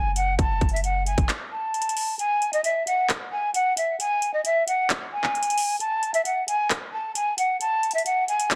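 Dark and hard-hitting, this half-time trap and hip hop excerpt is led by a breathy jazz flute with vibrato and a soft attack, sitting up front behind a low-pass filter. A deep, boomy 808-style sine bass with a dark tone rings out only until 1.3 seconds, while an overdriven trap kit of handclaps, metallic hi-hats and a hard-clipped kick brings a gritty 12-bit sampler edge and a small-room character. After a break at 1.3 seconds, the kick drops out from 2.2 seconds; light digital reverb and a dense, heavily limited master frame the whole.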